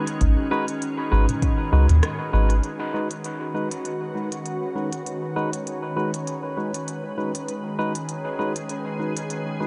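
Meditative and deep, this ambient dub passage at 99 BPM in G# minor opens on a G#m7 chord, with a calm, organ-like pad under ensemble chorus, a barky tine electric piano stabbing up front through a combo amp, dark ringing vibraphone arpeggios with dub echo, a round, soft sub bass and a layered electronic kick in the first 2.6 s, and a crisp, overdriven electronic kit of hi-hat, rim click and toms that sounds re-recorded in a large room; from 2.6 s a filter sweep moves across the pad, and at 3.7 s a bubbling, resonant stepped-filter texture joins in the background.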